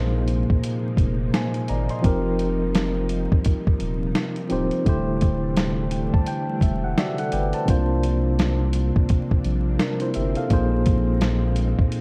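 Lo-fi hip hop at 85 BPM with a nostalgic, dreamy swing, where a clean, up-front tine electric piano filtered through cassette tape accompanies over suspended ninth chords and plays a fill from 5.6 to 7.7 seconds, soft vintage string-machine violas with ensemble chorus hover in the background, a deep, saturated sine sub bass holds the low end, and a gritty, compressed sampler-style kit with a thumpy kick enters at 0.3 seconds, all set in a dark, warm mix with vinyl crackle and moderate reverb.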